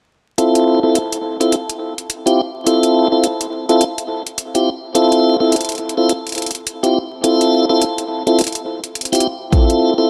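A tonewheel organ opens at 0.4 s with piping, scooped stabs on a Cadd11 chord, placed up front and kept clean through a slow rotary speaker, a low-pass filter sweep, sidechain pumping and analog delay. Alongside it, an overdriven electronic hi-hat ticks in the background, layered and re-recorded in a small room for a gritty edge. This swaggering glitch hop excerpt moves at 105 BPM in 4/4, with a 59% swing on the sixteenths giving the groove its strut. Only at 9.5 s does a knocking, overdriven electronic kick drum land, hitting hard and close before the organ stops at 10.1 s. The mix is echo-heavy, bathed in a moderate echo chamber reverb and dusted with vinyl crackle, and it is cut from a longer piece.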